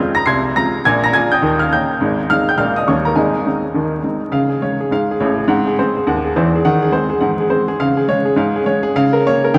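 Drenched in a long cathedral reverb and dusted with vinyl crackle, this short excerpt of stride piano jazz swings along at a brisk 207 BPM in a playful mood. A clear, woody upright piano plays alone and up front from start to finish, its intimate, natural tone carrying audible action noise and short sustain across a range from Ab1 to C7. The opening passage in Ab major moves through Fm, Bb7 and Eb7 changes before the music shifts to Db major at 4.3 seconds, resting on Db and Ab7 harmonies until it is cut off at 9.6 seconds.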